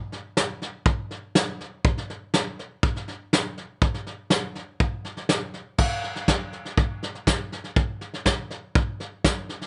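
A small-room recording with light reverb and a rolled-off top end places a soft brush drum kit up front in this short country excerpt, with a nostalgic, down-home mood in a straight 4/4 feel. Brushes on a medium-tuned snare sit mid-forward over a tight kick, while hi-hat and crash cymbal add color. The kit plays from 0.1 seconds to the end, and the passage moves into a new section at 5.8 seconds.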